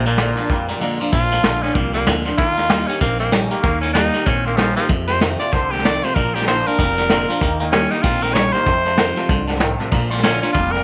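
Rockabilly with a rowdy, upbeat swing, this excerpt puts a raspy, gritty tenor saxophone up front, taking a forceful solo from 1.1 seconds over a Bb, Eb and F7 progression. Beneath it, a twangy electric guitar with phaser plays a riff, a picked steel-string acoustic guitar with audible finger squeak sits in the background, and a thumpy, woody upright bass holds the low end. A vintage brush drum kit with a tight kick and a rolled-off top drives from the front, while a clear, boxy upright piano adds very quiet touches at the opening and again from 6.2 seconds, all within light studio reverb.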